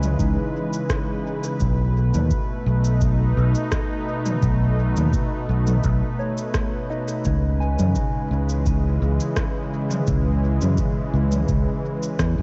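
Crackling vinyl, a dulled top end and light reverb frame this deep, spacious fragment of ambient dub, where a detuned, warbling analog sawtooth pad with chorus holds slow-blooming chords up front, a gentle FM bell with chorus, phaser and delay arpeggiates softly in the background, a growly overdriven fingered bass sits forward, a small-room electronic kit of rim clicks, shaker and toms is overdriven and soaked in dub echo, and a tape-toned analog kick thuds in from 0.2 seconds over a lightly swung groove moving from C#m7 to B7 and back.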